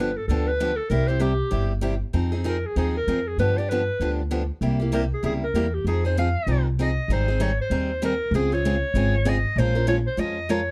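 A dark, lightly reverberant production frames this fiery, virtuosic snippet of acoustic string swing in F minor at 194 BPM, where a clear, punchy clarinet with jazz vibrato carries the solo melody over a bright, boxy picked steel-string parlour guitar and a woody, thumpy pizzicato gut-string upright bass, all three playing throughout as the harmony moves from a G7-C-Fm7 opening into a Abmaj7-Dbmaj7-Bbm9 passage at 7.1 seconds.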